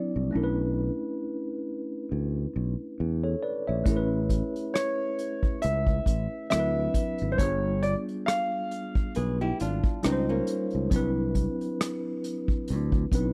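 A dry, close 1970s-style studio sound in a small room frames this relaxed, soulful neo-soul and R&B fragment, with swung sixteenths and extended chords moving from Bm11 to Cmaj9#11. A worn, slightly out-of-tune tine electric piano heard through its built-in speakers opens the piece alongside a bright, growly fingered electric bass. An acoustic drum kit enters at 3.9 seconds with a punchy kick, rim clicks and hi-hat played with bundle sticks, a warm grand piano carries the melody from 4.7 seconds, and a fingerpicked flamenco guitar with audible finger squeak adds a second line from 9.2 seconds.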